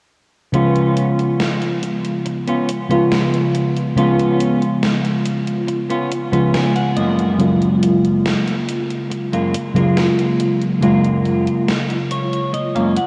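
Soaked in a huge ambient reverb with a faded cassette-tape haze, this nostalgic vaporwave excerpt drifts at 70 BPM in 4/4 as a mellow, round FM electric piano with phaser and ensemble chorus carries the C#7 to F#maj9 accompaniment up front, a clean picked electric guitar plays a filtered riff with fills at 6.1 and 11.7 seconds, and a gated 80s digital drum machine ticks out hi-hat and a gated-reverb snare underneath.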